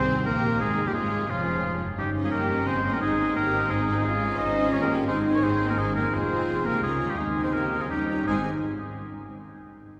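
A full orchestral texture opens at once: a graceful, spirited classical excerpt in Ab major and a lilting 3/4 at 173 BPM, cut from a longer piece. Up front, a warm oboe with light vibrato carries a second line, while a lush symphonic violin section sings the melody from the background, joined by a smooth-topped studio violin section on a second line of its own. Beneath them, a distant, clear viola section fills in the accompaniment. A very quiet French horn section holds soft-attack sustained chords, and a concert harp adds ringing, fingerpicked arpeggios. An even cello section and an expressive double bass section ground the bass, as the harmony moves from Ab through Db, Fm and Eb7 before settling back on Ab at 8.3 seconds, all bathed in the wet, long reverb of a cathedral-like hall.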